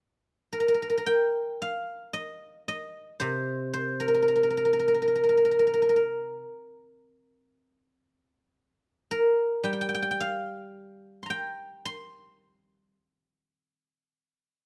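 Longing and elegant, this brief fragment of Chinese traditional solo plucked-string music unfolds in a free, rubato 4/4 around 56 BPM in C yu mode, as a single acoustic guzheng played with fingerpicks enters at 0.5 seconds and spans C3 to C6 with a silvery, ringing tone, sitting up front in a close, detailed and nearly dry recording.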